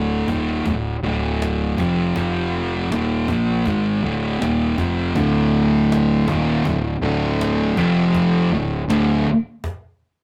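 A thick, distorted fuzz guitar riff and a growly, punchy fingered electric bass open this heavy, brooding stoner and doom metal excerpt at once, joined moments later by a woody cajon with faint snares, and a second up-front fuzz guitar riff enters at 5.1 seconds. The chords move from D minor through F power chords, closing on a D power chord. The sound is a rough rehearsal-room recording with tube saturation and a moderate small-room reverb, the bass also overdriven and the cajon compressed and saturated.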